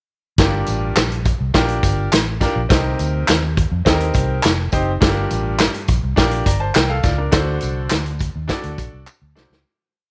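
Uptempo 1960s-style soul in G minor at 104 BPM, this short piece feels urgent and passionate, with its straight 4/4 groove moving from Gm7 through Cm7 and back before landing on D7. A vintage acoustic drum kit sits up front, its tight kick and medium-tuned snare driving a soul beat with the snare on all four beats, the top end rolled off for a natural studio-room sound. The foam-muted fingered electric bass is dark, round and punchy, playing a melodic, syncopated line with chromatic approach notes. A bright, brilliant grand piano pushes close-voiced chords, adding grace notes and short fills. In the background, tambourine and group handclaps mark the backbeat, joined by a tube shaker, all set in a small room ambience. The piece fades out from 7.3 seconds, and a drum fill at 9.1 seconds closes it.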